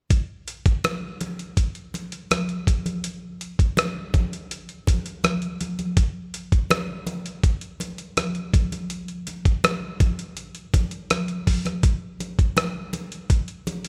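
Cinematic and silky, this short soul excerpt at 82 BPM in a straight 4/4 sets a gritty, compressed sampler-style drum kit up front, its thumpy kick, hi-hat and rim click running from 0.1 to 13.9 seconds, while thick-skinned, medium-tuned congas played with hard hands join at 0.8 seconds further back in a live room, all under light reverb.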